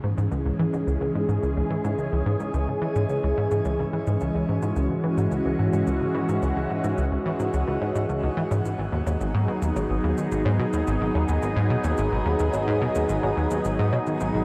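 A swirling, airy analog pad holds sustained chords through phaser and chorus while a punchy, funky analog bass riff plucks beneath it, opening this cosmic, expansive stretch of sequencer-driven ambient space music at 108 BPM in C# minor. Electronic bongos and shaker fade in from 0.2 seconds, sitting in the background with tape echo, as the harmony moves from C# minor to G#m7 at 8.6 seconds. A moderate shimmer reverb and the warbling pitch drift of worn cassette tape give the whole an expansive, aged sheen.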